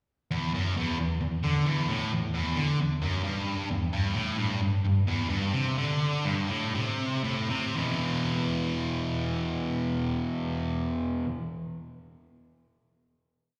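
This short rock piece, a live gig heard through the venue's PA, carries a recital hall reverb with light digital ambience around it. A lone sludgy distorted guitar plays alone from 0.3 to 11.3 seconds, electric and double-tracked, sitting up front with a bright overdriven edge and a slapback echo. In E minor and straight 4/4 at 114 to 134 BPM, its picked single-note riff moves from Em to G5 with a swaggering, driving mood. The riff slows down from 3.9 to 7.8 seconds before settling on a final E5 chord at the close.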